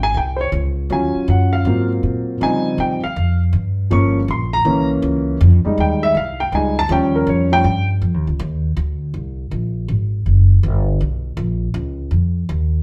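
Big band swing jazz at 161 BPM with a joyful, swinging lilt, this excerpt opens with a present, long-sustaining baby grand piano taking a solo over rich extended chords until 7.9 s, while a woody, pizzicato upright bass with steel strings sits up front and carries on alone through to 12.8 s, all in a moderate studio room sound of a band playing live together.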